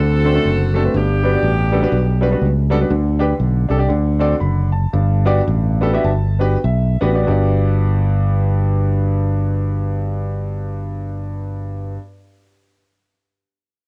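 Uptempo gospel with a hopeful, jubilant swing, cut from a longer piece: a bright, tight, close-miked jazz-style saxophone section carries the melody with plate reverb until 2.4 seconds, over a present, long-sustaining grand piano and a direct, amped fingered electric bass sitting up front. The music slows down through the middle stretch, where the plate-reverbed grand piano plays a fill from 5.5 to 7.3 seconds, and piano and bass continue together to the end. The whole piece has the light room ambience and homespun character of a cassette recording made at home.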